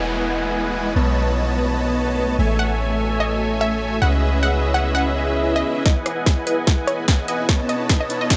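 A huge, thick supersaw riff sits up front in this lush, playful future bass excerpt in E major at 147 BPM, pumping alongside a deep, boomy 808-style bass that drops out at 5.6 seconds while an ethereal, airy pad with chorus, tremolo and built-in reverb holds sustained chords in the background. A bright, punchy unison pluck carries the melody from 2.6 seconds with tape echo, and background downlifter, swell and riser effects frame the opening and closing stretches. At 5.9 seconds a build-up arrives with a filter sweep on the pluck and a drum fill from an overdriven, hard-clipped kick and a big-room kit with a punchy snare, rim click and hi-hat, all set in light reverb.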